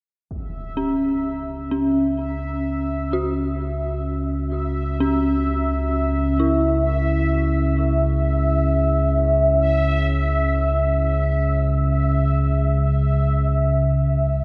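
An ominous, warbling drone rumbles up front from 1.0 s in this cavernous, desolate dark ambient passage, following a huge, bright impact at 0.3 s, while a resonant, bubbling synth texture steps through random filter changes and an eerie, inharmonic FM bell traces mellow arpeggios within a long cathedral reverb.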